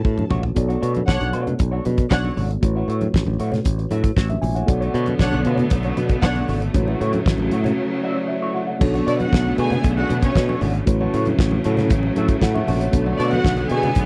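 A dry, close 1970s-style studio sound frames this driving, sultry disco excerpt in B minor at 116 BPM, opening on a drum fill from a damped kit with a fat snare and tight kick as a bright, growly fingered electric bass and the drums sit up front, while mellow tine electric piano, clean picked electric guitar through wah, and ringing, very quiet congas fill in behind. A warm, intimate bowed string section carries a second line with vibrato and a smooth top from the start, and a clearer, focused string section adds low sustained chords from 4.7 seconds, all over an alternating Bm9 and A6 progression. A break at 7.8 seconds brings a tine electric piano fill before the groove moves into a new section at 8.8 seconds.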